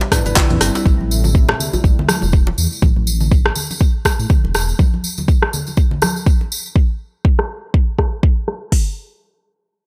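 This afro house excerpt opens on a soft bed of sustained chords from an analog pad, its detuned sawtooth tone shimmering with chorus and tremolo as it pumps against the sidechain, joined by brief felt-muted upright piano stabs whose thick felt and audible action noise lend an intimate feel beneath a trail of delay. Two electronic drum kits drive the groove with a swung sixteenth-note feel: an up-front afro-pop kit with a deep kick and metallic hats, and a tape-toned deep house kit of handclaps, hi-hat, rim click and toms, re-recorded in a small room and low-pass filtered, with a filter sweep running across it from 0.9 to 8.7 seconds. Hand percussion fills in around them, with a close, dry djembe, soft-handed congas and a jingly tambourine. A dark, rumbling detuned saw bass enters at 0.3 seconds, saturated and beating as it pumps with the sidechain, while a woody padauk marimba flickers through a short delayed arpeggio in the background. 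The harmony moves from Cmaj7 to Am7 before the chords drop away at 4.8 seconds, leaving the percussion to carry the warm, hypnotic mood in a small room ambience.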